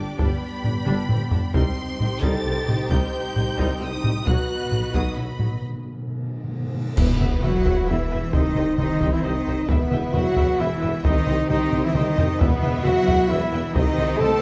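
Heroic and relentless, this excerpt of an epic orchestral film score drives forward at 133 BPM in 3/4, set in E harmonic minor. Taiko drums, struck with hard sticks and given a compressed, saturated edge, lead the mix from 0.2 seconds, with fills punctuating the phrases. Lush, vibrato-rich violins carry the high melody over a second violin line, while violas supply accompaniment and a smooth string section and mellow French horns hold sustained chords in the background. The low end rests on bowed cellos and double basses, joined by a very quiet tuba. Around 4.3 seconds, a soft-mallet timpani fill, bright clash cymbals and a concert bass drum build toward a break. At 7.0 seconds an impact lands as a distant, roomy trumpet enters with stabs, and a huge reverse cymbal and sub drop follow shortly after. The dark production sits in a moderate scoring-stage reverb, with the harmony moving from G, C minor and B to a cycle of E minor and C minor.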